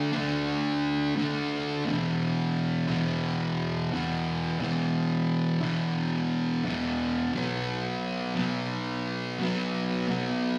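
Metal at 87 BPM in a straight 4/4, brooding and hypnotic, taken from a longer piece and heard live through a club's PA with its room reverb. A lone fuzz guitar plays throughout the 10.6 seconds, electric and picked, double-tracked and up front, its distorted tone warm and fuzzy with a slapback echo, spanning E2 to D4. It moves through D5, E5 at 1.9 seconds and B5 at 7.3 seconds.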